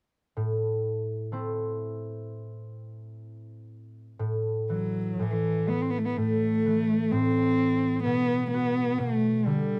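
A dry, close recording in a 1970s studio style with light reverb frames this brief excerpt of a Celtic slow air in A dorian, moving rubato at around 59-66 BPM in 4/4 with a longing, haunting mood. A mellow, ringing concert harp sits up front from 0.4 seconds, fingerpicked as accompaniment over an A minor harmony. At 4.7 seconds a single bowed cello enters with the melody, its tone warm and expressive with a soft attack, vibrato and portamento, before the harmony shifts to B minor at 8.1 seconds.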